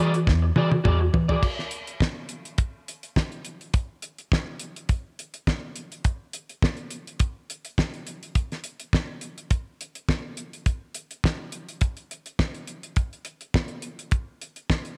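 A damped 70s drum kit, dry and up front with a fat snare and tight kick, carries this danceable, glamorous disco excerpt in 4/4, rolling through a fill from 0.3 to 1.4 seconds before pressing on alone until 15.0 seconds. At the start, a round, hollow-body short-scale fingered electric bass with a dark, amped tone and a picked electric guitar at the edge of break-up, treated with ensemble chorus, sound an E9 chord together and drop out at 1.4 seconds. Light reverb and small room ambience frame the sound.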